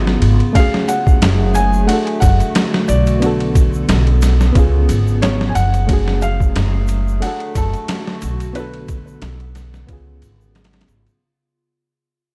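Melancholic and smoky, this 90 BPM trip hop excerpt with a light 16th-note swing sets a soft, felt-muted upright piano melody with tape echo over a reedy, worn electric piano carrying tremolo and 12-bit sampler grit, a warbling detuned pad, a growly pizzicato upright bass up front, a gritty, pitched-down boom bap drum kit with a thumpy kick, and a faint, close egg shaker, moving through C#7, F#madd9, D/F# and Bm7 in a dark, dry mix that fades out from 4.1 seconds.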